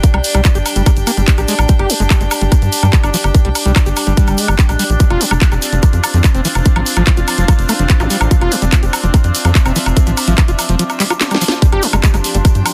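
A dense, heavily limited modern mix with little reverb carries this driving, psychedelic trance excerpt at 145 BPM, where an up-front tight kick and a layered garage kit with a cracking snare, handclaps, hi-hat and woodblock push a straight 4/4 over a punchy, saturated sawtooth sequencer bass with ring-modulated filter plucks. A squelchy, gritty acid bass riff with resonant filter sweeps, cassette-tape colour and dub echo pumps alongside a slow-attack drone of moving overtones and sustained chords, while an earthy, close chamber string section bows a bright texture and a grainy tube shaker sits in the background. The harmony moves between G5 and F5, and a very quiet electronic zap flickers at 8.0 seconds. The kick drops out at 10.8 seconds, a drum fill follows at 11.2 seconds, and the harmony returns to G5 at 11.6 seconds.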